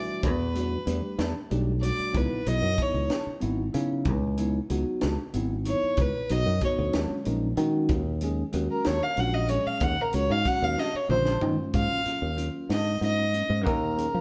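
Electric jazz fusion in a straight 6/8, intense and driving, as a dark, floating bowed violin solos up front over minor eleventh chords, with bell-like tine electric piano, a growly, punchy fingered bass and a crisp fusion kit with a high-tuned snare and pumping small-room sound, all captured live in a stone room, until a drum fill at 10.8 seconds leads into a suspended thirteenth chord at 11.7 seconds in this cut from a longer piece.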